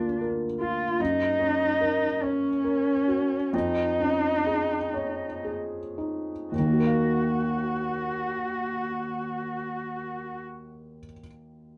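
A felt-muted upright piano, soft and boxy with audible action noise, and a dark, veiled cello bowed con sordino with vibrato begin together in this reflective, fragile neoclassical fragment in rubato 6/8, slowing through the first 6.5 seconds in a moderate studio ambience before the cello stops at 10.4 seconds and the piano carries on alone to 11.8.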